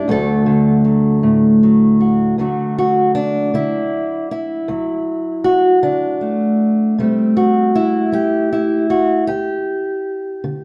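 A fingerpicked, ladder-braced acoustic guitar opens this short cut from a longer folk piece, playing alone and up front in the mix. Its tone is dark and woody, with the dulled character of old strings, ranging from D2 up to A4 in D mixolydian and tuned slightly below standard pitch, to A4 = 435 Hz. The feel is peaceful and warm, moving slowly in 6/8 at 52 dotted-quarter beats per minute with a straight feel. A brief opening passage gives way to a second section at 2.4 seconds, with the harmony resting on D before shifting to C6 at 7.0 seconds and then dropping away from any chord at 9.3 seconds. A large, wet studio reverb surrounds the guitar with a long, spacious tail, and the performance has the unguarded presence of players captured live together in one room.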